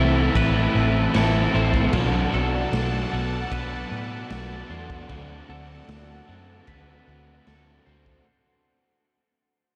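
A wistful, hazy shoegaze and dream pop fragment opens on a swirling, detuned sawtooth pad under phaser and chorus, bright, twangy twelve-string arpeggios with tape echo in the background, two overdriven guitar riffs (one crunchy with subtle chorus, the other trailed by reverse reverb) and a round, foam-muted bass up front, before a gritty, dark garage drum kit of punchy kick, snare and crash enters at 0.4 s, while the harmony moves through Am, Bm7 and D7 in a reverb-soaked mix that fades out across its 8.3 seconds.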